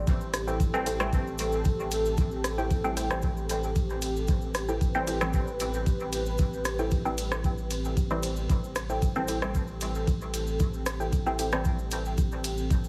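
A deep, tape-warm electronic kick drives this nocturnal, hazy dub techno excerpt at 114 BPM in A minor, joined by a deep house kit of smooth hi-hats, ride cymbal and rim click with small room reverb and dub echo, plus a grainy, bright cabasa tucked in the background. A round, soft sub bass holds A1 and a dark, moody analog pad sustains an Am7 chord, both pumping with the sidechain. From 0.5 s a warbling, lo-fi pluck drifts through dub echo and chorus, and from 0.7 s a muted, detuned chord stab with phaser and ring-modulated edge joins, all under a heavily compressed, radio-like sound.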